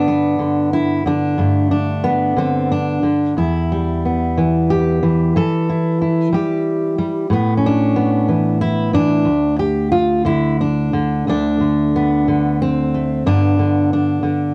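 A fingerpicked steel-string acoustic guitar with a dark, full-bodied dreadnought tone carries this short folk piece alone, sitting up front in a light reverb and cut from a longer work. The mood is reflective and intimate, moving at 91 BPM in 3/4 with a rubato feel that lets the time breathe. The chords pass from Gadd9 to Em and Aadd9, give way to a chordless stretch at 9.3 seconds, then settle into a new section at 11.3 seconds on D5 before closing on G. Its range reaches from D2 up to A4, and finger squeak on the strings adds to the close, personal character. A home cassette recording lends the guitar a tape-colored texture that suits its intimate, private air.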